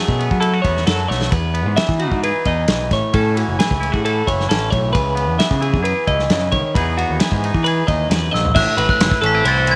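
Light reverb and a small-room ambience frame this playful, intricate math rock and midwest emo excerpt at 133 BPM in straight 4/4, tuned slightly low to A4 = 436 Hz. A clean, fingered electric guitar with a twangy edge carries the accompaniment beneath bright, compressed twelve-string arpeggios. A growling, overdriven picked bass joins a loose, punchy indie drum kit with a rolled-off top that sits up front, moving through chords like F#m11, Emaj9 and C#m7. With a drum fill at 8.3 s, a bell-like glockenspiel played with soft plastic mallets enters with a ringing high melody, and the harmony shifts to Am6 at 8.6 s.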